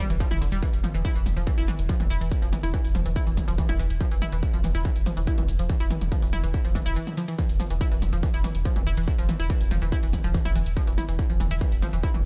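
A straight 4/4 pulse drives this driving, industrial peak-time techno excerpt, anchored by a distorted, layered electronic kick sitting up front and an overdriven analog drum machine of hi-hat, shaker and toms re-recorded in a large room. Beneath it a deep, thick triangle sub bass holds a single low note, saturated and low-pass filtered with sidechain pumping, while a round sawtooth-and-square analog pluck riff with a noise layer and filter sweep decays through chorus, tube saturation, pumping and digital delay. The sound is dry, and a brief break from 7.0 to 7.4 seconds interrupts the otherwise continuous groove.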